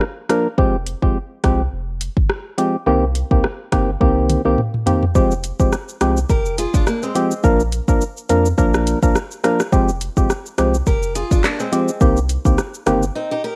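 Tough and hypnotic, this dancehall cut rides a lightly swung sixteenth-note groove through a looping cycle of Bb, Fmadd9 and Cm7. A hollow, percussive organ stab sits up front with a mellow, chorus-tinged tone and quick decaying hits. An electronic afro-pop kit drives alongside it, with a deep kick, metallic hats, handclaps, rim clicks, shaker and toms, and a drum fill before the second section. A thick, saturated sub bass enters almost at once and holds long, deep notes beneath. An old, woody, boxy acoustic guitar adds picked arpeggios at 6.3 seconds and again from 10.9 seconds, and a brief break closes this excerpt from a longer piece. The dry, home cassette sound gives the organ, drums and guitar a tape-softened grit.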